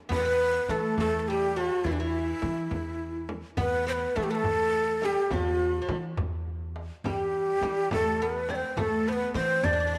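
Persian modal ensemble music in E dastgah shur, melancholic and longing, moving at 69 BPM in 6/8, where a breathy, close-miked ney carries the melody up front with vibrato, unsteady tongued phrasing and a slapback echo, over a woody, plectrum-plucked fretless oud on a second line, a dark, thumpy gut-string upright bass played pizzicato, a soft-handed frame drum kept dry in the background, and a very quiet, deep tombak struck with hard hands that enters at 3.6 s, heard within a moderate echo-chamber reverb in this short cut from a longer piece.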